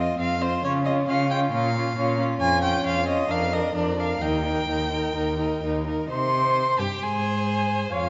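In a rubato 4/4 moving at 126-137 BPM, this restless, stormy fragment of a quick classical-period string quartet movement in Ab major keeps all four bowed players going from 0.0 to 8.1 s. The first violin carries the melody up front with light vibrato and a smooth, even, distant tone, while the second violin adds a close, vibrato-rich second line. The viola's expressive portamento fills the accompaniment, and the cello anchors the bass, likewise up front and gliding expressively. A wet concert-hall reverb envelops the quartet, with the top end capped at 7.8 kHz, and the harmony settles onto Ab as a new section begins at 6.1 s.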